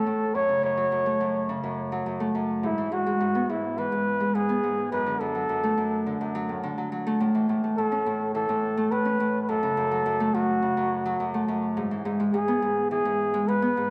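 A breathy flugelhorn carries the melody in this playful, delicate folktronica excerpt, its mellow, whispered tone, soft attack and gentle vibrato sitting up front with an intimate, pop-style solo voice. Beneath it, an acoustic Celtic harp rings out fingerpicked arpeggios in its lower and middle register, placed close and given a rounded edge by a low-pass filter. Both parts play together across the full 13.9 seconds in a straight 4/4, and each carries a touch of tape echo. The chords move from F#m through E and D/F# before the passage shifts at 7.2 seconds to A, F#m and E. A generous recital hall reverb surrounds the pair, and the tuning sits slightly below standard pitch at A4 = 436 Hz.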